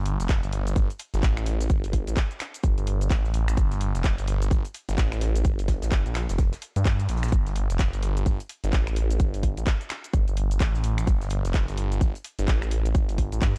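Dark-toned and nearly free of reverb, this bouncy, gritty bass house excerpt at 128 BPM in G minor, swung on the 16ths, rides a swirling, thick phased detuned saw bass with tube saturation and sidechain pumping, a tight, up-front electronic kick, a garage kit of finger snaps, handclaps, shaker and hi-hats, and a very quiet damped 70s kit with a fat snare, hi-hat and shaker.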